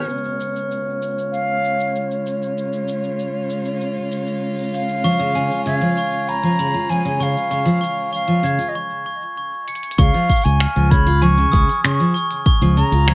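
A mellow, hollow concert flute carries the straight-toned, tongued melody from 1.3 seconds, trailed by digital delay, in this playful folktronica excerpt at 97 BPM in Db mixolydian, over a dark, bowed string quartet swept by a low-pass filter and the finger snaps, smooth hats and shaker of a tape-warm electronic kit, joined at 5.0 seconds by full-bodied picked steel-string guitar arpeggios and a bell-like glockenspiel with brass mallets, both delayed, before a brief break and drum fill open onto a brilliant fingered electric bass and deep electronic kick at 10.0 seconds, all in light reverb.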